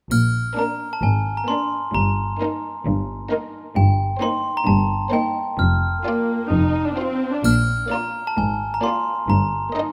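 Magical and playful, this whimsical cinematic film cue moves in a straight 4/4 and is cut from a longer piece. A bright, sparkling glockenspiel struck with hard plastic mallets carries the melody from the first moment, close-miked, dry and up front, its bell-like ringing high above the orchestra. Cellos and double basses hold the low end together from 0.1 seconds, the cellos focused with a smooth top and the basses even with light vibrato. At 0.6 seconds the upper strings join: a smooth violin section takes up a melodic line, a second, more distant violin line enters with a soft attack and expressive portamento, and a lush viola section sits close and up front in the accompaniment. A triangle with a dark cymbal colour adds brief touches near the start and again at 7.4 seconds, while a moderate scoring-stage reverb gives the strings a spacious bloom over a harmony that circles back to its opening chords.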